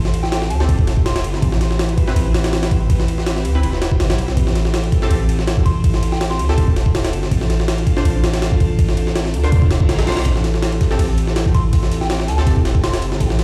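Dark and frenetic, this excerpt of drum and bass jungle at 163 BPM in A minor rides a gritty, overdriven, pitched-up sampler drum kit with a thumpy kick, high-tuned snare and ride cymbal up front, over a deep, sine-like 808-style bass and an airy, breathy pad with chorus, while bold, detuned orchestra-hit-like stabs with dub echo and a soft FM synth bell with 12-bit sampler grit sit in the background, a reverse cymbal sweeps in at 9.7 seconds before a very quiet, crunchy breakbeat kit with hi-hat and snare joins at 10.3 seconds, all cycling through Am7, Cmaj7/A and Dm7/A in a big bare room with vinyl crackle.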